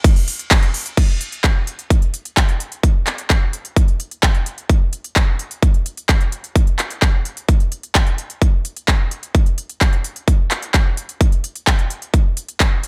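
Powerful and anthemic, this EDM excerpt drives at 129 BPM in a straight 4/4, carried entirely by drums. A punchy, layered electronic kick sits up front, with a big-room dance kit of crash and ride cymbals, handclaps and crisp hi-hats playing from the start to about 12.9 seconds. Both parts carry a tape-warm, produced character, re-recorded in a large room, while the overall mix stays dry with little reverb.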